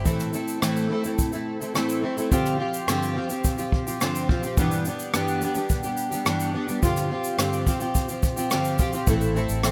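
Carefree and heartfelt, this acoustic pop excerpt at 106 BPM in 4/4 sets a double-tracked, full-bodied fingerpicked jumbo steel-string guitar up front over a jazz brush kit with a boomy kick, rim clicks and shaker, while a dark, round, foam-muted electric bass sounds at 0.0 seconds and returns at 9.1 seconds alongside a grainy, very quiet egg shaker, all within a bright 1980s-style digital production bathed in moderate plate reverb as the chords move from Am through G7sus4 and Em7/G.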